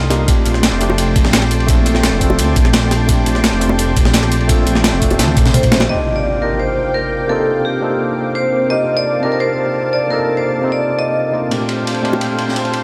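Liquid drum and bass at 171 BPM in C dorian, melancholic and soulful, where a worn, slightly out-of-tune tine electric piano with overdrive and digital delay and a lush, chorused unison pad with sidechain pumping hold Bbmaj13 and Cm11 chords throughout, while a deep, rumbling detuned saw bass, a thumpy electronic kick, a gritty sampler-style breakbeat kit, a dark, saturated background kit with ride and snare, and tight, high-tuned bongos drive the first 5.9 seconds up to a drum fill and an electronic impact, and a metallic, ringing vibraphone with hard mallets, fast motor vibrato and tape echo carries the melody from 5.5 to 11.3 seconds, all in light small-room ambience.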